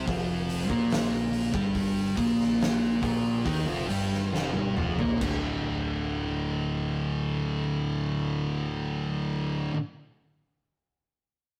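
A straight 4/4 pulse crawls along at 67-72 BPM, dragging slower through the opening stretch in this sludgy, hypnotic slice of stoner and doom metal in D phrygian, cut from a longer piece. Two thick fuzz guitars grind out the riff from start to finish, one pushed up front, both electric, picked and heavily distorted with a warm, saturated weight, settling on an F5 power chord before shifting to D5 at 5.2 seconds. Beneath them, a growling picked electric bass adds a bright, overdriven edge, played direct and amped. An oversized low-tuned acoustic kit pounds in a big, pumping room, pairing a boomy kick and fat snare with dark cymbals, hi-hat and toms. The drums roll into a gritty fill from 4.3 seconds and drop out at 5.4 seconds, leaving the guitars and bass droning on. The rough rehearsal-room recording carries a warm saturation and sits in a moderate stone reverb.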